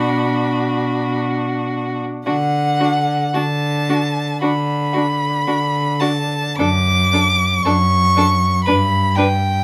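Elegiac and yearning, this excerpt from a slow romantic movement for string quartet moves with rubato at 52-60 BPM in D major, opening on B minor before settling onto D major at 2.3 seconds and reaching G by 8.7 seconds. A close, up-front first violin carries the melody with warm vibrato, portamento and expressive bowing, while a distant second violin and viola lay down a smooth, even, rich-toned second line and accompaniment. Beneath them an up-front cello plays a smooth, clear bass line with light vibrato, all held in a moderate studio reverb.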